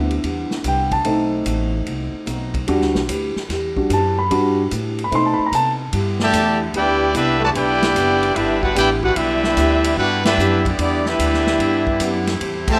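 A brassy, dramatic big band swing excerpt opens with an intimate, up-front grand piano solo, its action noise audible, over a boxy, picked acoustic guitar in the background, a woody, growly pizzicato upright bass and a vintage drum kit with a punchy kick and rolled-off top, until at 5.9 seconds a distant, very quiet saxophone section slips in with sustained chords, and from 6.2 seconds bright, tight trumpets carry the melody over a mellow, soft-attack trombone second line, with band accents landing at 10.2 and 12.6 seconds in a moderately reverberant large studio.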